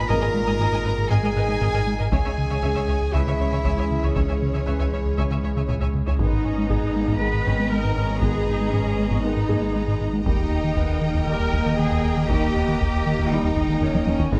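Driven by a straight 4/4 pulse from heavy-stick taiko ensemble drums with fills, this vast, relentless hybrid orchestral and electronic film cue opens with an intimate solo cello melody, airy and sul tasto with tape echo, until 5.9 seconds, over a round, nasal analog bass riff and a deep sine sub bass. Meanwhile, lush bowed violin sections carry a melody and a second line, a viola section fills the accompaniment, and rich cello and focused double bass sections anchor the low end. Tight, bright trombone and French horn sections hold sustained chords with a hollow, warbling chorused pad, and a brilliant grand piano with audible action noise and tape echo adds texture, all captured with close, detailed microphones and light reverb.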